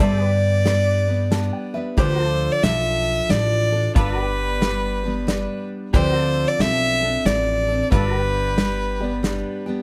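A swung waltz lilt in three drives this short cut from a longer honky-tonk and classic country piece, its heartfelt, nostalgic mood carried by a natural-sounding drum kit up front, with punchy kick, medium-tuned snare and hi-hat in a small room. A clear, focused bowed fiddle sings the melody close to the ear with light vibrato, while a growly, woody upright bass plucks the low end underneath. A bright, full-bodied jumbo acoustic guitar is picked in accompaniment, finger squeaks audible, as a clean, compressed pedal steel guitar sits in the background, sliding through sustained chords with volume swells. A very quiet, dark, boxy grand piano supports the harmony and slips in a brief fill between 1.0 and 2.0 seconds. The chords sway between G and Dm, touching Dm7 before settling back on G at 7.9 seconds, all captured with close, detailed microphones and light reverb.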